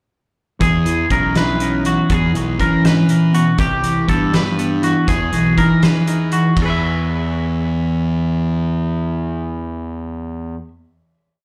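Heard through a club PA with small-room reverb, this short, wistful piece of math rock and midwest emo moves in a straight 6/8 feel, with a loose indie drum kit giving a fat snare, punchy kick, crash and hi-hat until 6.7 seconds. A dark, fingerstyle electric guitar with analog chorus plays rolling arpeggios beneath a bright, twangy guitar that repeats an intricate picked figure through lush chorus, digital delay and slapback echo. An up-front, fuzz-overdriven picked bass anchors the low end as the chords move from E6 through Cmaj9#11 and Emaj9 to a final E chord that rings from 6.6 seconds.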